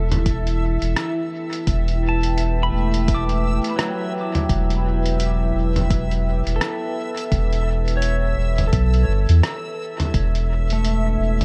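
Spacious and meditative, this ambient dub excerpt moves at 85 BPM in 4/4 with a swung sixteenth feel in E minor, resting on Em before shifting to D/E at 10.1 seconds. A dark, detuned sawtooth pad holds sustained chords with chorus and reverb, while a clean, fingerpicked pedal steel guitar plays sliding arpeggios with volume swells through dub echo, and a round sine sub bass sits up front beneath a reversed, granular texture that shimmers high on E5. A muffled, pitched-down lo-fi kit of hi-hat, rim click and toms, also sent through dub echo, enters at 0.1 seconds, followed by a layered electronic kick that joins at 0.3 seconds and stops at 10.3 seconds, all within a dark, warm digital ambience.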